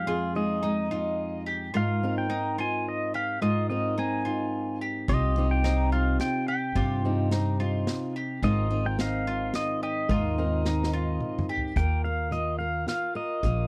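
Peaceful and nostalgic, this short acoustic folk excerpt in a straight 3/4 at 108 BPM sets a clean, compressed pedal steel melody with fingerpicks and slide against a warm, full-bodied fingerpicked steel-string guitar, whose finger squeak is audible, while a bright bowl-back mandolin picks double-string arpeggios until 11.8 seconds. At 5.1 seconds a woody, thumpy pizzicato upright bass and an acoustic drum kit played with bundle sticks join, with dark cymbals and a punchy kick, and a drum fill leads into a new section on an Ebsus2 chord at 11.8 seconds. The sound is dry and close, in the manner of a 1970s studio, with the steel guitar, acoustic guitar and bass up front.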